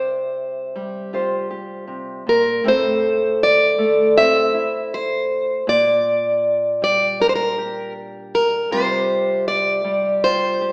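Heard through an AM-radio tone and a wet, large-studio reverb, this short 10.7-second cut from a longer acoustic folk-pop ballad sounds like a duo playing live together in one room. At 79 BPM in a straight 4/4, a warm, picked plugged-in steel-string acoustic guitar carries the melody up front with a concert sheen and audible finger squeak. Alongside it, a warm, fingerpicked nylon-string guitar with a classical touch, also up front, supplies the accompaniment, moving through Csus4, Am and Gm/Bb before returning to Csus4 in a reflective, intimate mood.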